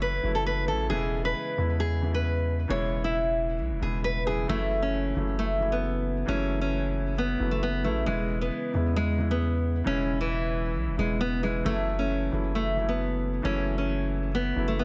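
Softened by light reverb and a muted top end, this brooding, melancholic trap-flavoured hip hop cut moves with a half-time feel, taken from a longer piece. A fingerpicked nylon-string guitar carries the melody up front with a classical, acoustic warmth and a trail of tape echo, while a dark, mellow concert grand accompanies with audible action noise and a smooth, vintage intimacy. Underneath, a long, sine-like 808-style bass sits up front with a fast attack and deep, decaying notes, all three parts playing from 0.0 to 14.8 seconds.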